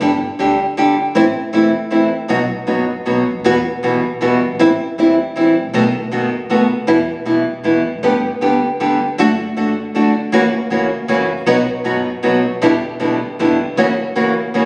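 Melancholic and tense, this tango excerpt in E minor moves at 157 BPM in a rubato 3/4, built around an up-front, fingerpicked nylon-string guitar accompaniment with a small, warm tone while a woody, thumpy pizzicato upright bass on gut strings sits in the background. At 8.0 seconds a distant, very quiet symphonic string section enters with clear, lush bowed stabs carrying focused vibrato. The sound has the character of a phone recording made in the room, bathed in wet recital-hall reverb, with harmony drifting through chords such as Emadd9, D/F# and F#7.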